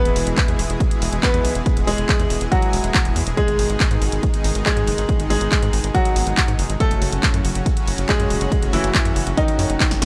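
A straight pulse from a punchy, tape-warm electronic kick and an analog drum machine's snare, handclaps and sidechain-pumped hi-hats drives this soaring, euphoric uplifting trance excerpt, where a tight, plucky sawtooth sequencer bass and a lush, detuned supersaw pad both pump with the sidechain under a bright, intimate grand piano second line with audible action noise and digital delay, all moving through E, G#m and F#m in a dry mix.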